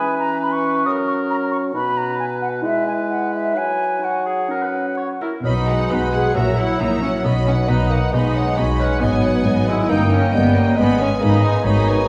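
A pure, expressive concert flute sits up front at the start of this graceful, lively classical-period orchestral passage in B major at 135 BPM with a rubato feel, alongside a dark clarinet, a punchy, roomy oboe and a soft-attacked bassoon, until the flute stops at 5.2 s and bowed string sections join the remaining winds around 5.4 s: a clear, intense violin melody over a smooth second violin line, rich viola, lush cello and even double bass, with a mellow French horn section holding background chords, the whole ensemble heard from further back in a reverberant scoring stage with vinyl crackle.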